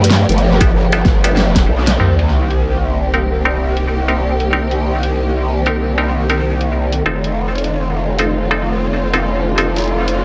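An up-front, saturated growl bass wobbles beneath lush, bowed symphonic strings carrying vintage 12-bit grit and sidechain pumping in this gritty, playful swung glitch hop excerpt at 95 BPM in C dorian, while a twangy, nasal muted clav stabs through tape echo, a pop drum kit with a fat snare and filtered hats sits in an echo-heavy mix, a punchy electronic kick drum hits from 0.6 to 1.7 seconds, and a background sub drop and riser arrives at 2.0 seconds as the chords move from G9 to Cm7 and F7.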